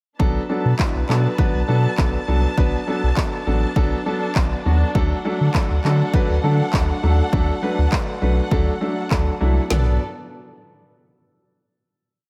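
A punchy deep house drum kit drives this energetic dance-pop piece in B minor at 101 BPM, its four-on-the-floor beat layered with handclaps, toms and a woody snare, while a round, sine-like sub bass plays a syncopated line with chromatic approach notes, pumping under sidechain compression. A clear, intimate concert grand piano, its action noise audible, plays eighth-note chords over Bm7 and D, and a dark, distant string section adds a lush bowed pad with vibrato, both also pumping. The drums stop at 9.8 seconds, and the piano, bass and strings hold a final Bm7 from 9.7 seconds in light reverb.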